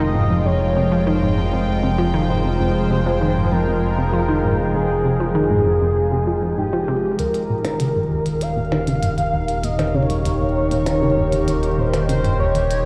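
A swirling phased analog pad sits up front in this hypnotic, expansive slice of sequencer-driven space music, joined from the start by a shimmering pulse-width lead with cassette-tape color and delay, a nasal analog pluck riff roughened by 12-bit sampler grit, a fat, thick analog bass and a very quiet bubbling stepped-filter texture that stops at 7.2 seconds, when clicky electronic hi-hats and percussion blips enter and a filter sweep runs over the synth arpeggio sound, the mix set in a huge stone-room reverb as if played through a big sound system in a bare room.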